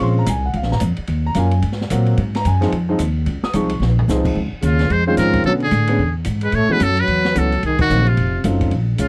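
A dry, close studio sound in a 1970s style frames this short excerpt of small-group swing and bop, moving briskly at 220 BPM in 4/4 with a swung eighth-note feel in Db major. The mood is swinging and playful, carried at first by a concert grand piano with rich deep bass comping up front alongside a woody, steel-strung upright bass played pizzicato. An open jazz kit sits in the mix with dark cymbals, a high-tuned snare and a boomy kick, its top end softly rolled off, and it marks a drum fill at 3.8 seconds. At 4.6 seconds a trumpet with a metal mute takes the melody, buzzy, thin and brilliant, with vibrato, soft attacks and scooped notes, while a dark, breathy trombone with light vibrato plays a close-miked second line beneath it. The harmony turns through colourful chords such as Cbm7, E and A6 before the band hits an accent at 7.8 seconds, heading into Cm7b5 and F7b9 as the excerpt cuts off.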